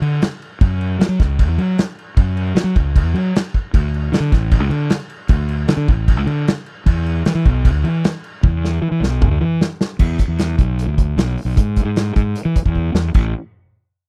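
A growly, fuzz-laden fingered electric bass holds down the low end in this short excerpt of math rock and midwest emo, its overdriven tone punchy and up front as it ranges from A1 to F#3. A loose indie drum kit plays alongside it in straight 4/4 at 153 BPM, with a punchy kick, a medium-tuned snare, hi-hat, crash cymbal and toms caught in a small, pumping acoustic room. The mood is wistful yet playful, and the sound is dry, with little reverb. Drum fills arrive at 3.5 seconds and again from 8.4 to 10.0 seconds, the longer one leading into a new section at 10.0 seconds. Both parts play together almost to the end, and a final fill at 12.8 seconds closes this fragment of a longer piece.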